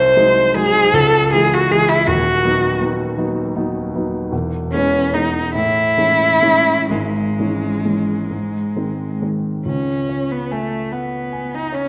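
In a rubato 6/8, this solemn, yearning romantic classical duo, cut from a longer piece, sets a rich, focused bowed cello melody with vibrato up front over the dark, mellow, vintage-toned accompaniment of a baby grand piano with long sustain, both bathed in the wet reverb of a scoring stage as the harmony turns to a new section at 9.7 seconds.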